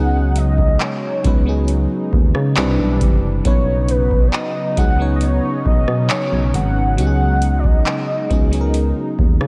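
Dreamy and romantic, this slow contemporary R&B excerpt at 68 BPM floats a velvety, vibrato-tinged synth lead with chorus and analog delay over glassy, bell-like FM electric piano, a smooth detuned analog pad and a punchy, round FM bass, while a booming analog drum machine with deep kick, metallic hats, handclaps and rim clicks enters at 0.4 seconds carrying vintage 12-bit sampler grit, all set in light reverb as the chords move from C#9sus4 through Cmaj9 and Badd9 back to C#9sus4.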